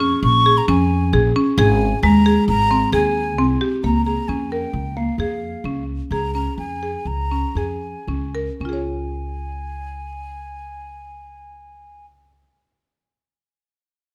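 Set in an uneven 5/4 with a straight feel, this short excerpt from a longer contemporary chamber piece has a restless, playful mood. A buzzing marimba, struck with medium hard mallets on hardwood bars, spins bright, dry arpeggios. A pizzicato upright bass supplies a thumpy, woody low line underneath. Above them, a mellow jazz flute with a hollow, airy straight tone carries the tongued melody until 12.1 seconds. The tempo slows between 4.7 and 8.6 seconds, and the harmony moves from Bbm7 through Ab and Bbm7/Db before settling on Db. All three instruments sit up front in a moderate recital hall reverb.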